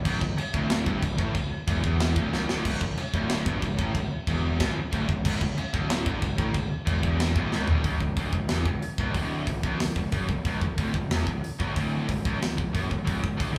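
Aggressive and dark, this heavy metal passage is cut from a longer piece and drives forward in a straight 4/4 feel. Two high-gain electric guitars carry the riff in a low register from the opening moments, both bright and picked, one set further back in the background, and both thick with distortion. Beneath them a picked electric bass growls with fuzz and overdrive, its direct-and-amped tone biting through in the lowest register. An up-front acoustic drum kit with a tight kick, a medium-tuned snare, toms and bright china, crash, splash and hi-hat cymbals sounds polished and airy, and it plays fills at 2.3 and 7.5 seconds. A new section arrives at 7.8 seconds, and the whole band sounds like it is playing live in one room, with a moderate large-studio reverb adding depth around a small-room ambience.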